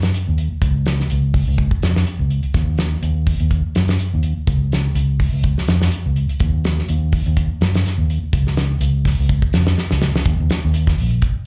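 Afrobeat at 124 BPM in Eb minor with a light 16th-note swing, this hypnotic, driving fragment of a live club gig, heard through the venue's PA, pairs an up-front, dark, round fingered electric bass with a damped, dry 70s drum kit of hi-hat, tight kick and fat snare, whose fill at 9.8 seconds leads into a new section at 10.3 seconds.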